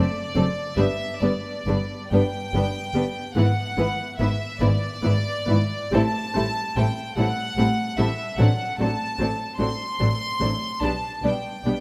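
In a lilting 6/8 at a slow 44-50 BPM counted in dotted quarters, this tender, lyrical fragment of a romantic string orchestra movement in G major breathes with a flexible rubato. A clear, floating first violin section carries the melody high above, bowed sul tasto with a pure tone, while a darker second violin line moves beneath it with light vibrato and a smooth, soft-edged top. The violas fill in the accompaniment with a close, intimate sul tasto sound, and the double basses anchor the lowest register, sitting slightly forward in the balance. Cellos share the bass role from further back, their symphonic tone warm and floating. The harmony drifts from D7 to G through E7/G# and Am7 before settling on G/B near 10.8 seconds, all held in a moderate scoring-stage reverb that gives the ensemble a gentle sense of space.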